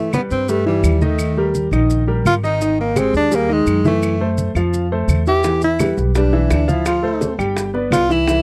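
A dry, close 1970s-style studio sound with light reverb frames this sunny, danceable stretch of Afro-Cuban jazz, cut from a longer piece, at 169 BPM in a straight 4/4. A clear tenor saxophone with soft-attack vibrato carries the melody up front beside an intimate concert grand piano whose action noise and deep bass sit present in the mix, while a dark, thumpy pizzicato upright bass on gut strings anchors the low end. Low-tuned, damped congas, distant woody claves and grainy maracas fill out the percussion from 0.1 s, and tight, high-tuned bongos join in the background at 5.4 s.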